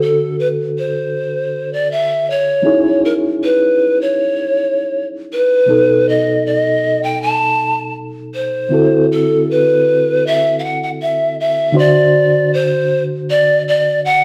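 A breathy bamboo pan flute with soft-attack chiff and vibrato carries the melody up front over a reedy, clean electric piano pulsing with fast tremolo through its built-in speakers, in a smooth, cinematic soul passage at 79 BPM, played live together in a stone room with a wet, lingering reverb and moving from D7 through B7 to D13 before a brief new section at 11.7 seconds.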